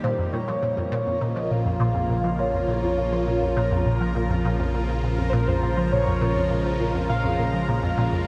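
Ambient, sequencer-driven space music in Bb minor at 102 BPM, mysterious and expansive, where a squelchy, resonant blip pluck riff with phaser, ensemble chorus and delay sits alongside a bright, morphing wavetable pad up front, a shimmering pulse-width lead with vibrato carries the melody through chorus and delay, a nasal analog drone bass enters at 1.6 s, and a bubbling stepped-filter texture drifts high above, all held on a single Bbm chord inside a huge, dark reverb in this fragment of a longer piece.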